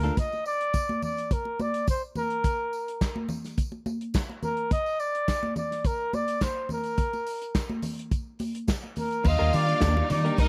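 A straight 4/4 disco groove at 106 BPM drives this celebratory, danceable fragment. A muffled, dry soul drum kit with dark cymbals, handclaps and a tight kick runs throughout, joined by jingly tambourine in the background and ringing, high-tuned congas from 0.2 seconds, while a breathy, intimate flugelhorn carries a jazz-style melody up front. At 9.2 seconds the music lands on an Ebmaj7 chord, bringing back clean, compressed electric guitar and a lush, distant string section, both heard only briefly at the very start, and introducing an intense, bright violin section on a second line. A round, punchy hollow-body bass returns a moment later, and everything is captured in a close 1970s-style studio sound.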